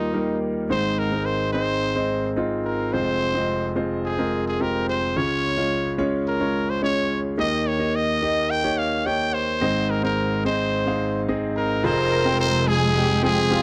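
Bittersweet and dramatic, this piano-driven pop excerpt pairs a raspy, growling trumpet melody with a clear concert grand piano whose deep bass, long sustain and audible action noise sit up front in a dry, close 1970s-style studio sound with light reverb. After a grand piano fill from 11.0 s, a lush symphonic string section enters at 11.8 s with soft-attack sustained chords. A smooth violin section joins at the same moment, carrying a second line in the background.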